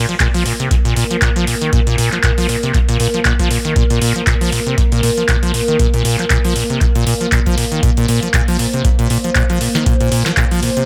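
A squelchy, resonant sawtooth acid bass opens this hypnotic, driving acid house excerpt, its riff plucking with a fast attack and bright decay that sits up front, thickened by tube saturation, lush chorus and dub echo. Within the first fraction of a second a booming analog drum machine joins with crisp snare, metallic hi-hats and handclaps, each carrying a short room, while a deep, tape-warm electronic kick arrives at 0.2 seconds. A dark analog pad enters at 0.4 seconds, holding moody sustained chords built from detuned square, saw and triangle tones with a sub octave, a slow attack and a long release. The pad is treated with chorus, phaser and sidechain pumping, which keeps it breathing beneath the bass and drums. A gentle swing on the sixteenths and a digital ambience give the groove its loose, shadowy pull through to the cut at 10.9 seconds.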